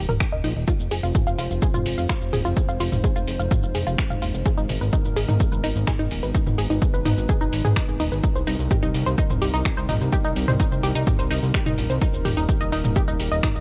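A straight pulse from a punchy, tape-warm electronic kick drives this dark, cinematic melodic techno excerpt, as an analog drum machine adds finger snaps, hi-hat, shaker and toms under sidechain pumping, a fat, saturated, wave-folded bass throbs in the low register, a lush detuned unison pluck spins delayed arpeggios through a filter sweep that runs across the full 13.6 seconds, and a deep, nasal analog pad with chorus enters at 0.7 seconds to hold moody chords moving from Fm through Abmadd9 and Cm7 to Eb, all set in a digital ambience.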